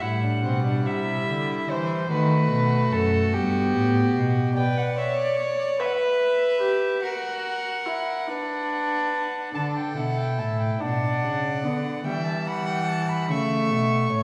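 A dark, nasal first violin carries the melody up front in this elegant, lively baroque-style fugue for string quartet in 6/8, its gut strings sounding reedy in period style. A close second violin with a rich tone plays the second line while a viola with light vibrato supplies accompaniment, and the bowed cello bass drops out at 4.6 seconds before returning at 9.5 seconds for the closing section. Cut from a longer piece, the recording is heard from further back in a recital hall with generous reverb and a layer of vinyl crackle.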